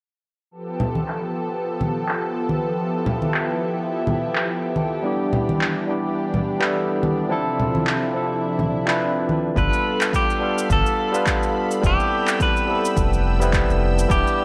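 Sunset chillout in a relaxed, wistful mood, this excerpt opens on a lush, detuned unison pad with chorus, soft-handed saturated congas and low-pass-filtered electronic handclaps and shaker under a filter sweep, adds a barky tine electric piano with digital delay at 5.0 seconds, and at 9.6 seconds brings in a twangy clean electric guitar melody through spring reverb and delay over a round, dark analog bass and a punchy electronic kick, all set in a lush hall with worn, warbling cassette tape drift.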